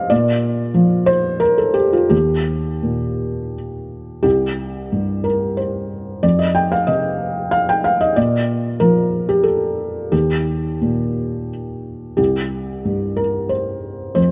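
Wistful and intimate, this neoclassical minimalist piano piece, cut from a longer work, drifts in a rubato 3/4 at roughly 83-95 BPM in C dorian, tuned to A4 = 445 Hz. A felt-muted upright piano plays alone from 0.0 to 14.3 s, ranging from C2 to G5, with a dark, thickly felted tone, short sustain and audible action noise, placed up front in a light reverb. The same section is heard twice, its harmony moving through Bb, Eb, C5 and F5 before returning to Bb, Eb and C5.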